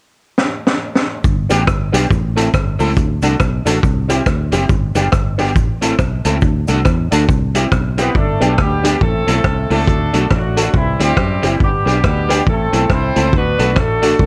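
A swung, cheerful ska groove kicks off with a drum fill on a saturated, gritty vintage kit with a high-tuned snare, before a round, foam-muted fingered bass settles in up front at 1.2 seconds alongside a grainy cabasa far in the background. A dark, slightly broken-up electric guitar with vibrato and a jangly, detuned honky-tonk upright piano with analog delay carry the G, Am, D, C progression. At 8.0 seconds a horn section with light vibrato and octave doubling takes the melody up front, all heard through small room ambience with a cassette-tape character in this excerpt cut from a longer piece.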